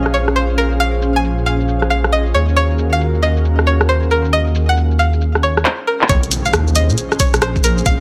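A twangy, nasal resonator pluck carries the melody with chorus and tape echo over a rumbling detuned saw bass, with a breathy pad and a granular cloud pad both pumping, the cloud pad sitting in the background, and a tape-warm garage kit of claps, hats, rim clicks and shaker filtered low, swinging through a skippy, soulful two-step garage groove at 136 BPM in Bb minor, moving from Bbm9 to Ebm7 before a drum fill leads into a drop at 6.1 seconds, where a gritty, pitched-down kick and a distant electronic impact enter.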